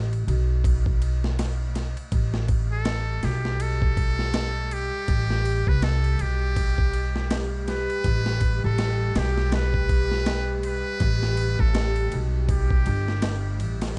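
This hypnotic, dark trip hop fragment opens with a woody, pizzicato upright bass placed up front in the G1 to C2 range. A compressed, sampler-style drum kit joins almost at once, its thumpy kick, medium-tuned snare and ride cymbal roughened by overdrive and vintage 12-bit grit. The groove sits at 81 BPM in 4/4 with a 59% swing on the sixteenths, moving from a chordless opening into A7sus2 and then to Gadd9 at 8.0 seconds. A trumpet with a metal mute enters at 2.7 seconds, playing a buzzy, thin jazz-style solo between G4 and B4 with light vibrato, a soft attack and tape echo. From 3.1 seconds a deep, warbling ambient pad holds sustained chords low in the mix, coloured by chorus and reverb. The whole takes place in a small-room ambience with a faint mains hum beneath it.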